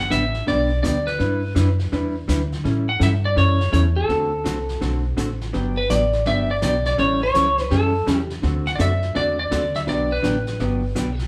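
Country western swing with a cheerful, swinging lilt, cut from a longer piece and played live by a band in one room with a moderate studio reverb. An up-front, clean lap steel guitar carries the melody with fingerpicks and a slide over a woody, thumpy pizzicato upright bass and a compressed, picked hollow-body jazz guitar that moves through changes like Em7, A7 and D7 before settling on Gmaj7. A vintage brush kit sits distant and roomy behind them, its fat snare and hi-hat softened by a rolled-off top.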